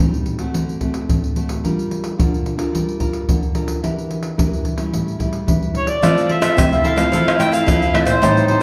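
Samba and choro in a joyful, playful mood, this short cut from a longer piece opens with a small, fingerpicked nylon-string guitar carrying the accompaniment, its finger squeak audible. Almost at once a percussion group of pandeiro, tight surdo, tube shaker and tamborim joins, sitting up front with a small-room acoustic character. Around 5.8 seconds a reedy, vintage accordion takes the melody up front, its slow beating and band-limited tone giving it an old-time flavour. At 6.0 seconds the arrangement fills out: a mellow tenor saxophone adds a jazz-style second line from the background with vibrato, subtone and scooped notes, a crisp picked cavaquinho joins the accompaniment in the background, and a dark, classical-sounding fingerpicked nylon-string guitar takes up the bass. The whole is heard from further back in a large studio with a wet reverb, as the harmony moves through minor and dominant seventh chords before settling on a major seventh.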